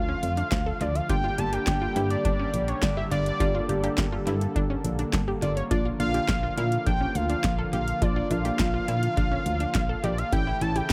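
This synth-pop excerpt has a cool, nocturnal mood, moving through a Dm, Gm, Bb and A progression in a straight 4/4. A fat, detuned sawtooth lead with a sub octave and vibrato sits up front, carrying the melody through an analog delay. Beneath it, a funky polysynth comp mixes sawtooth and square waves with a filter pluck and chorus, while a smooth analog pad holds sustained chords behind it with chorus and tremolo. A lush, warbling unison pluck plays arpeggios in the background, its vintage tone edged with a noise layer and echoed by delay. A round, punchy FM bass anchors the low end, and from 0.2 s an electro analog drum machine joins with a deep kick, punchy snare, metallic hi-hats and handclaps, kept dry and forward. Light reverb and plenty of delay give the mix an echo-heavy sheen.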